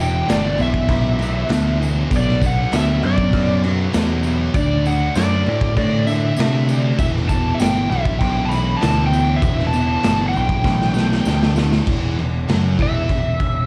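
Swaggering and menacing, this straight 4/4 garage rock excerpt in E minor at 98 BPM pairs a double-tracked fuzz guitar riff and a growling, overdriven picked bass, both up front, with a raw, punchy drum kit in a pumping stone room, a jingly tambourine in the background, and a bright slide guitar melody bathed in plate reverb. The chords move from Em through Bm and D5 and back to Em, and a drum fill at 10.7 seconds leads into a slide solo at 11.9 seconds, where the chords drop out.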